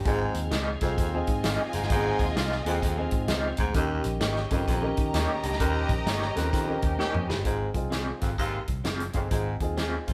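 A very quiet tonewheel organ with slow rotary speaker sustains chords beneath a raspy, growling baritone saxophone riff as this danceable, swung 1960s-style soul snippet opens, quickly joined by woody upright piano, dark foam-muted electric bass and an up-front country drum kit with a punchy kick, while a twangy, slightly broken-up guitar adds stabs and a lush bowed violin section carries a second line from 1.0 s; a distant, roomy horn section takes up a line from 6.8 s as a band accent and drum fill lead into the next section, the players heard together in one room with moderate large reverb.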